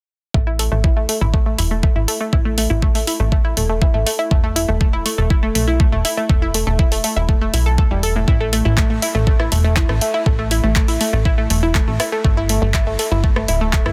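A knocking, overdriven electronic kick, a punchy, dark bass and a nasal, detuned analog pluck playing arpeggios all arrive at 0.3 s in this euphoric, uplifting progressive house excerpt at 121 BPM. A layered pop kit of handclaps, hi-hat and rim click joins at 0.6 s, while the bright pluck, colored by chorus, phaser and tape echo, pumps with sidechain over a progression that moves from A5 to E5, back to A5, and then to Gsus2. The sound is dry, with the kick and pluck up front, and a dense, heavily limited modern master.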